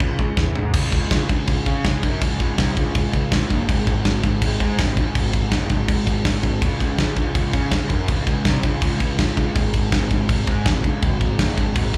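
Heavy metal at 163 BPM in a straight 4/4, aggressive and relentless, cut from a longer live club performance heard through the venue's PA with a touch of club reverb. The big rock drum kit sits up front with a punchy kick, a medium-tuned snare, toms, crash and china cymbals, and a rolled-off top; a short drum fill from 0.4 to 0.7 seconds launches the main section. A bright, growly fuzz bass, picked and overdriven, plays alongside the drums between F#1 and C#3.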